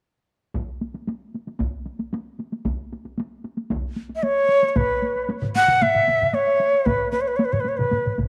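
A moderate plate reverb with a 2.8-second decay surrounds this short, powerful slice of Japanese traditional taiko drumming, cut from a longer piece and set at a straight 114 BPM in 4/4. Two taiko groups start the driving pulse almost at once: one struck with hard sticks, close and dry, and another with heavy sticks in a live room, sitting in the background. At 4.2 seconds a bamboo shakuhachi steps up front, breathy and bright, with a crisp, chiffy attack, vibrato and an unsteady, lifted tone, ranging from B4 to F#5. At 4.8 seconds the second section begins as two more taiko groups join: one played with heavy sticks, close but in the background, and one with hard sticks in a small room, placed up front. The shakuhachi carries the melody over this fuller drum ensemble to the end of the clip.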